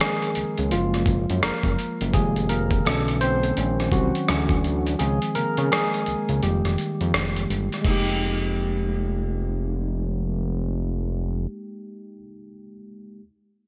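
Bright, 1980s-style digital production with light reverb frames this sultry, late-night R&B and neo-soul excerpt at 84 BPM in F minor, where a barky tine electric piano with analog chorus takes a solo over chords such as Dbmaj9 and Fm11, a gritty, overdriven sampler-style drum kit with gated reverb and a thumpy kick mutes its kick from 5.0 seconds and stops at 8.0 seconds, and a fat, detuned analog bass with a filter sweep holds the low end until 11.5 seconds.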